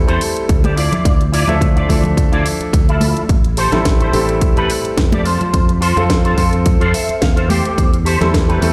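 A clear concert grand piano with deep low notes and long sustain opens this sleek, groovy nu-disco excerpt, pumping with sidechain compression and trailed by analog delay, alongside a bright, growly fingered electric bass. A twangy, scooped electric guitar through an envelope filter plays a picked riff, thickened with ensemble chorus and delay. A punchy, overdriven electronic kick arrives at 0.5 seconds, joining a layered house kit with a cracking snare and hi-hat, both re-recorded in a large room. Hard-handed congas sit in the background with a small-room, acoustic character, while a clean electric guitar fill appears from 6.7 to 7.8 seconds. The harmony moves from Am7 over E through Dmadd9, Am7 and F, all set in a big, reverberant space with a light digital ambience.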